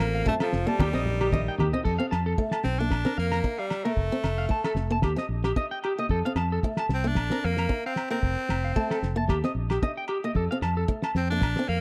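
Highlife guitar band music in a carefree, sunny mood, this short cut from a longer piece moves at 113 BPM in 4/4 with a lightly swung sixteenth feel in F mixolydian, cycling through F, Eb and Bb. A raspy, gritty tenor saxophone carries the melody up front with light vibrato and a punchy, forceful pop-style delivery, while a twangy electric guitar at the edge of break-up plays arpeggios from 0.1 s, coloured by spring reverb and slapback echo. A boxy picked acoustic archtop guitar, finger squeaks audible, fills in the accompaniment, and a round fingered electric bass sits prominently beneath. The cloth-damped drum kit sounds thuddy and dark, with a fat snare, tight kick and dark cymbals, and it plays a fill from 0.8 s to 1.8 s, just as a very quiet, reedy overdriven combo organ and low-tuned congas drop out, leaving ringing agogo bells in the background. The whole has a dry, close 1970s-style studio sound with little reverb.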